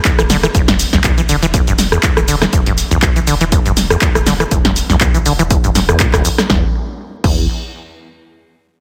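A squelchy, resonant sawtooth acid bass riff with delay and sidechain pumping drives this hypnotic acid house excerpt in E minor at 121 BPM with a 16th-note swing, over a punchy, tape-warm analog drum machine of crash, handclaps, hi-hat, rim click, shaker and snare sitting up front, a dry electronic kick, and a deep, thick triangle sub bass pumping in the background, all with light reverb and a heavily compressed radio-like sound, until a chordless final section begins at 6.5 seconds and the drums stop at 7.3 seconds.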